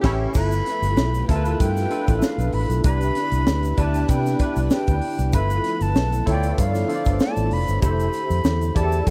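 Slick and urban, this polished 1980s jazz-funk pop excerpt at 96 BPM in 4/4 with a light sixteenth-note swing opens on a band accent as a breathy, close-miked concert flute carries the melody with slapback echo over a barky, lightly overdriven tine electric piano, shimmering sawtooth string-machine violins treated with phaser and ensemble chorus in the background, a dark, foam-muted fingered electric bass up front, and a crisp fusion drum kit with punchy kick, high-tuned snare and bright cymbals in a pumping small room, while a grainy egg shaker joins at 0.3 s as the chords move through G13, Cmaj9 and Fmaj9.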